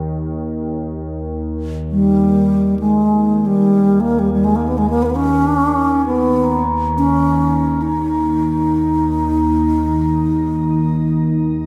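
An airy, straight-toned bass flute with shimmer reverb and dub echo carries the melody up front from 1.9 seconds over a deep, detuned ambient pad drone with chorus, while a metallic, ringing vibraphone with shimmer reverb adds background texture from 6.4 seconds in this spacious, haunting world meditation excerpt, set in an echo-heavy mix with springy reverb.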